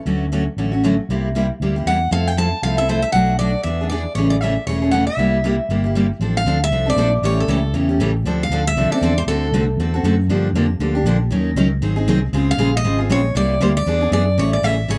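A dry, open-air recording with close, up-front instruments captures this lively acoustic string swing in the jazz manouche style, moving at a brisk 235 BPM in 4/4 with a swung eighth-note feel. A bright, fresh-stringed picked steel-string acoustic guitar carries the accompaniment with a slapback echo, while a growly, amped fingered electric bass anchors the low end throughout. A second picked acoustic guitar takes the melody from 1.9 seconds, drops out at 9.5 and returns at 12.5, over chords that run from Dmaj7 through C7 and F6 to Amaj7.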